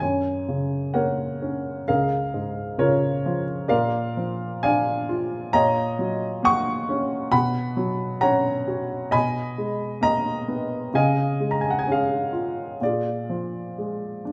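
A dark, woody upright piano sits up front and plays alone from 0.0 to 14.3 s in this wistful, lyrical classical fragment cut from a longer piece, moving with rubato at 66 BPM in 4/4 in F# major across a span of C#2 to C#6, its mellow, vintage tone carried by a moderate recital hall reverb as the harmony travels from F#add9 through Bsus2 and G#madd9/B to a closing A#7.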